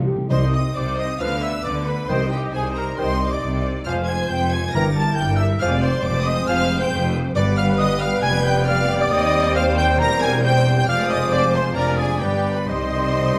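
Stormy and restless, this quick classical-period movement for symphony orchestra moves at 136 BPM in 4/4 with a rubato feel, set in C minor and cut from a longer piece. Timpani struck with hard mallets open with a brief fill before the violins enter at 0.3 seconds, where a rich, bowed violin section carries the melody high above the orchestra with smooth, even vibrato. Beneath it, a clearer second violin section, a lush viola section, a mellow oboe and clarinet, and an airy, very quiet flute ensemble weave second lines and accompaniment, while a mellow bassoon adds accompaniment and a dark French horn section holds sustained chords in the background. The bass is anchored by an intense cello section and a focused, distant double bass section, and a roomy trumpet section adds stabs. The harmony churns through C minor, F minor and G with diminished and seventh chords before the timpani return at 12.7 seconds to close on C minor, all captured with close, detailed microphones and light reverb.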